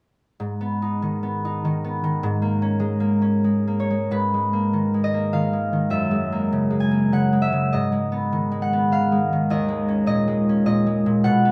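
In a rubato 3/4 at about 100 BPM, this wistful, mysterious classical excerpt features a solo concert harp in G# dorian, tuned to A4 = 438 Hz, playing from 0.4 to 11.5 seconds across a range of D#2 to G#5. The fingerpicked harp sounds acoustic, ringing and up front, set in a wet studio reverb. Its harmony moves from G#m and A#m7/G# into a second passage at 4.1 seconds built on G#madd9, F#9 and G#m9 before settling on D#7sus4.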